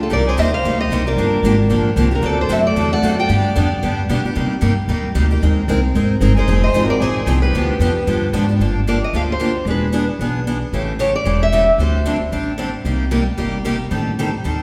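The recording sits in a wet recital hall, where a reverb tail of nearly two seconds gives the ensemble a spacious, resonant halo. This is a bittersweet, virtuosic gypsy jazz tune at a brisk 226 BPM with a swung 4/4 feel, starting in C minor and moving to G minor at 8.6 seconds, tuned slightly under standard pitch. A picked steel-string guitar with a darker concert tone carries the melody, joined early on by a bowed violin with focused vibrato playing a second line. Both pause briefly around 3.9 seconds before returning. Underneath, two more picked guitars play the accompaniment. One is bright and boxy, with the parlour character heard up front. Another, softer one sits in the background and drops out at 8.4 seconds until 12.8 seconds. Finger squeaks catch on the guitar strings, and a woody, thumpy pizzicato upright bass anchors the minor-key harmony through chords such as Cm7, D7, E7 and Am7b5.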